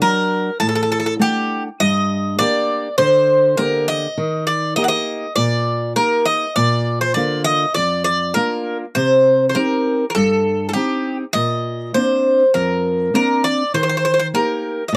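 Greek folk at 100 BPM in a straight 4/4, bittersweet and brooding, cut from a longer piece. A bright, metallic Greek bouzouki carries the melody up front, its picked double strings partly octave-doubled, while a fingerpicked steel-string acoustic guitar supplies warm accompaniment through chords moving from D and Gm to Eb, Bb, Cm and Bbadd9. The sound is a dry, close 1970s-style studio recording with little reverb, tuned slightly high to A4 = 443 Hz.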